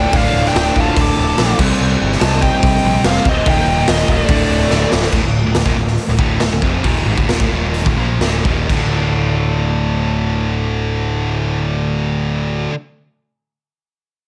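A straight 4/4 pulse at 121-144 BPM drives this menacing hard rock piece in D phrygian, where a gritty, saturated, up-front garage drum kit with a pumping stone-room sound, punchy kick, medium-tuned snare, hi-hat and crash cymbal lands a fill just before the tempo slows at 5.1 s, while a growling overdriven picked bass and three riff guitars churn through Cm, Eb and Dm chords: a bright high-gain one, plus a double-tracked raw garage guitar and a sludgy one, both sitting in the background. Above them, a biting lead melody with plate reverb and tape echo rides over a dark octave-fuzz second line until 4.9 s, in a lightly reverberant mix with a muted top end.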